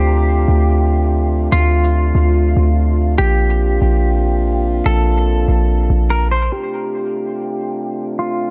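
This hip hop piece, cut from a longer work, moves at 144 BPM in 4/4 with a half-time feel, settling into a hazy, spacious mood in D minor, tuned to A4 = 441 Hz. A semi-hollow electric guitar carries the melody with a clean, fingered, compressed tone, softened by a low-pass filter and trailed by dub echo. Beneath it, a French horn section holds sustained chords with light vibrato and a mellow, classical ensemble character, also passed through a low-pass filter. A deep, boomy 808-style bass sits up front with a fast attack and a decaying sine body until it drops out at 6.5 seconds. The harmony moves from Dm7 to Bbadd9 and back to Dm7, and a filter sweep runs from 6.5 to 8.5 seconds as the guitar and horns carry on alone. Light small-room reverb and heavy echo give the mix its airy depth.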